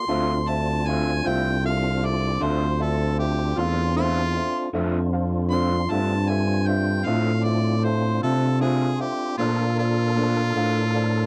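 A dry, close 1970s-style studio sound frames this mournful, soulful slow blues in D minor, moving at 52 BPM in 12/8 with a straight feel, sitting on Dm7 before shifting to Bbmaj7 at 9.4 seconds in this short cut from a longer piece. A bright, overdriven harmonica takes the solo up front with light vibrato and scooped notes, while a breathy tuba carries the bass with mellow, scooped tones. Behind them a fat tonewheel organ holds sustained chords through a slow rotary speaker with key click, a twangy, slightly broken-up electric guitar with harmonic tremolo supplies lo-fi accompaniment, and a woody upright piano fills in the background.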